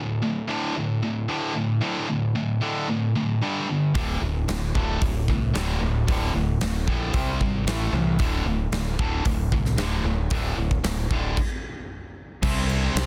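Menacing and heavy, this hard rock excerpt moves at 113 BPM in a straight 4/4. A high-gain, double-tracked electric guitar opens alone with a picked, distorted riff built on D5 and G5 power chords, sitting bright and up front. At 4.0 seconds a growling fingered bass, overdriven and punchy with a direct-and-amped tone, arrives together with a huge arena drum kit. The kit has a punchy kick, a medium-tuned snare, hi-hat and bright crash cymbals in a hall-like space. The riff moves through D5, C5 and A5 before the band hits a stop at 11.4 seconds, and the clip ends on a C5 chord, all within a dense, heavily limited modern master and small room ambience.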